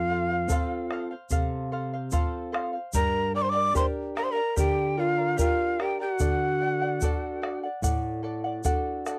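Dry, close and lightly reverberant, this fragment has the intimate presence of a 1970s studio session, with a festive, earthy Andean folk character in a straight 4/4. Up front, a cane quena carries the melody with a bright, breathy tone, crisp chiff on each attack and expressive vibrato, while large cane pan pipes sit below it as a second line in a steady straight tone with tongued entries. Beneath them, a charango's fingerpicked double strings shimmer, partly octave-doubled, beside the warm, fingerpicked voice of a flamenco guitar on fresh strings, the harmony moving from F to Gm to D. From 0.5 seconds a round, compressed and saturated bombo sits forward in the mix alongside a grainy egg shaker set back in a small room. The winds stop at 7.6 seconds, leaving the strings and percussion to carry on until the clip breaks off at 9.2 seconds.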